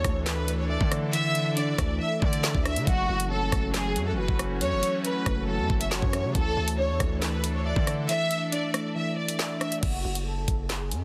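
Half-time hip hop drill with a menacing, cold mood, this excerpt sets a lush, bowed violin section with expressive vibrato up front, over round, mellow chorused electric-piano-like synth keys and a detuned sawtooth pad that stays airy and in the background. A saturated, heavy 808-style bass and an up-front drill kit of knocking kick, woody snare, metallic hi-hats, rim clicks, handclaps and crash drive the groove, with the kick dropping out from 8.1 to 9.8 seconds. At 9.8 seconds the keys and pad stop and a filter sweep passes over the violins, all within a dense, heavily limited modern master with digital ambience.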